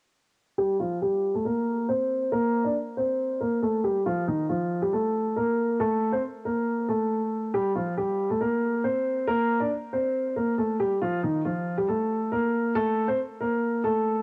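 A mellow baby grand piano sits up front and carries the melody from 0.6 to 14.2 seconds, its long sustain shaded by a low-pass filter, a filter sweep and the grain of cassette tape. This ominous half-time hip hop passage in G minor moves at 138 BPM over chords alternating between Gm and F. The piano's dark tone is set in a small room with moderate reverb, in a home recording on cassette, and the passage is cut from a longer piece.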